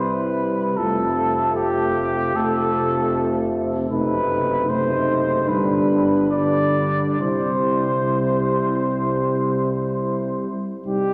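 A clear flugelhorn carries the melody up front, singing with a light vibrato and a vintage, classical character in this serene, hymn-like passage for brass band, cut from a longer piece. Beneath it, a mellow French horn section carries a second line, while the euphonium and trombone supply accompaniment. The trombone is close-miked with a soft attack and its own light vibrato, giving a warm glow before it drops out at 10.5 s. A tuba anchors the bass with a soft attack from the background. The 4/4 pulse is played with rubato, and the harmony moves from C through F and a tense F#dim7, then passes through G and returns to C at 7.2 s. A wet church reverb surrounds the ensemble, lending the chords a spacious, devotional bloom.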